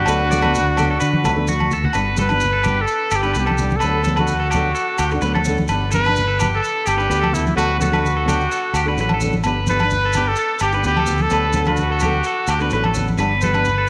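Carefree and joyful, this highlife guitar band piece is cut from a longer performance, with a straight four-beat feel. Up front, a clear trumpet with vibrato carries a jazz-style melody throughout, while a bright alto saxophone with scooped notes and a slapback echo sings a brief second line in the background, stopping at 1.5 seconds. A slightly broken-up, twangy electric guitar picks arpeggios through a slapback echo. Beneath it, a dark, thumb-plucked flamenco guitar adds accompaniment, and a round, punchy fingered electric bass anchors the low end up front. Ringing agogo bells and soft-handed, low-tuned congas sit in the background, joined by grainy maracas. A short fill at 1.4 seconds leads into the second section at 1.9 seconds, where the harmony keeps moving between D6 and G under a moderate plate reverb.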